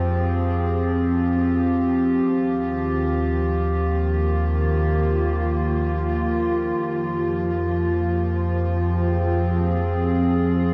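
Dark and awash in a huge, wet reverb, this reflective, spacious ambient fragment drifts as a warbling, nostalgic tape-like pad with chorus holds lo-fi sustained chords moving from Fm to Eb at 2.3 seconds and back at 6.8 seconds, resting on a deep, round sub bass up front and a reedy, breathing pedal harmonium drone.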